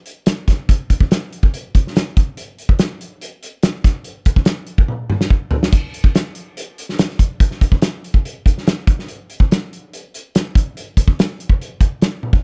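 Rock drum excerpt with an intricate, wistful mood, built on a loose indie kit played in a straight 4/4 feel from 0.1 to 12.4 seconds. The acoustic kit sits up front in a small, pumping room, with dark crash and hi-hat cymbals, a medium-tuned snare, a tight kick and toms, and carries little reverb. Drum fills stand out at 4.9 seconds and again near the close at 12.2 seconds.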